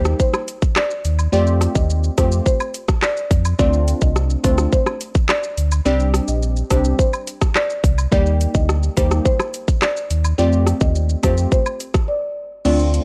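A straight 4/4 dancehall groove at 106 BPM drives this tough, sultry cut from a longer piece, built on a tight, overdriven island pop kit of kick, rim click, metallic hi-hat, handclaps, shaker and crash, sitting up front beside a deep sine sub bass with an added octave. Soft-mallet marimba carries a woody, round melody, while a crystalline, detuned wavetable pluck with chorus and ring modulation fills in the accompaniment over chords moving from Eb through Fadd9, Dm7 and Csus2. A faint, close woodblock and cabasa layer adds acoustic texture in a dry, gritty recording with digital ambience, and a brief break at 12.1 seconds leads to the kick dropping out at 12.7 seconds.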